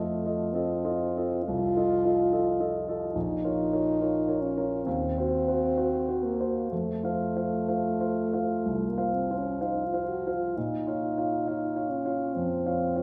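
Played in a flexible, rubato 4/4 at roughly 62-71 BPM, this romantic classical duo unfolds with a solemn, yearning character across a 13-second excerpt cut from a longer piece. A mellow French horn carries the melody from the start, close-miked and up front, sung in a classical style with light vibrato in its middle register. A grand piano accompanies throughout, its tone warm, present and polished, sitting just as forward as the horn and spanning from deep bass notes into the treble. The harmony moves from an F7 through B-flat minor and a diminished chord before settling on F and turning back to B-flat minor at 10.6 seconds, lending the passage an unresolved, longing pull. A wet recital hall reverb with a 1.4-second decay surrounds the pair, giving the intimate performance a sense of a real concert space.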